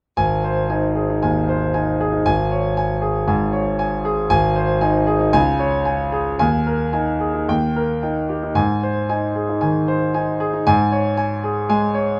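Brilliant and sparkling, this classical virtuoso piano study unfolds with a rubato feel in 4/4, a short passage cut from a longer piece. A clear concert grand piano plays solo from 0.2 to 12.2 seconds, ranging from Ab1 up to Ab5. Its tone is clear, open and up front, with a deep bass. The harmony moves through Ab, Db5/Ab, Ebsus4 and Eb before settling back on Ab and Db5/Ab near the close. A moderate studio reverb lends the instrument a gentle sense of space.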